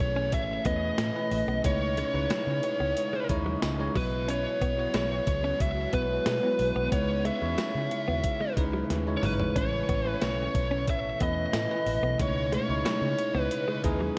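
A biting, overdriven lead guitar sings up front over bell-like tine electric piano, a foam-muted round fingered bass, a quiet picked clean guitar riff, a background overdriven guitar and a very quiet ethereal detuned pad, while a gated 80s drum machine with a thumpy kick and gated-reverb snare drives this dramatic, nostalgic 1980s-style pop excerpt in C# minor at 91 BPM, all bathed in a dreamy plate reverb, with a drum fill at 8.9 seconds.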